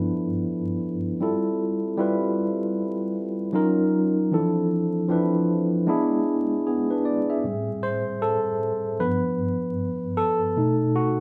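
Late-night and sultry, this short R&B excerpt features a lone tine electric piano, clean and up front through its built-in speakers, drifting over a swung 16th feel through lush extended chords like G13, Fmaj9 and Dm9 before it takes a solo turn from 7.4 seconds over Am7, G7 and B7, all set in a moderate studio reverb with a live-room feel and a haze of vinyl crackle.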